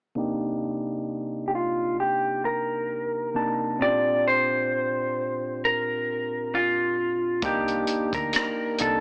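A slightly broken-up, lo-fi electric guitar through a small old amp carries the melody from 1.5 seconds over a barky, gritty overdriven tine electric piano that moves under a filter sweep through Cm7 and Bb69, and at 7.4 seconds a dark, compact cocktail drum kit with a punchy kick, hi-hat and rim click enters together with a round, foam-muted dub bass sitting in the background, giving this relaxed, sensual neo-soul and R&B excerpt the light reverb and small-room feel of a small speaker.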